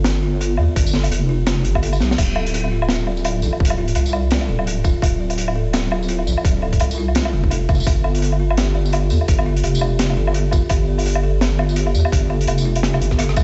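Half-time drum and bass at 169 BPM in D dorian, dark and tense, with a swung sixteenth feel as a buzzing, woody kalimba carrying gritty 12-bit sampler texture and tape echo spins arpeggios over a deep, detuned wobble bass thickened with chorus and saturation. A crunchy, saturated breakbeat kit with a high-tuned snare, dark cymbals, rim clicks, tambourine and woodblock sits up front, joined at 0.8 seconds by a tight, layered electronic kick that drops out briefly before the drop lands at 2.2 seconds, with a drum fill closing the passage. The whole thing sounds as if played through a big sound system in a bare stone room, with stone room reverb and a dulled top end, over chords moving from G to Dm and back to G.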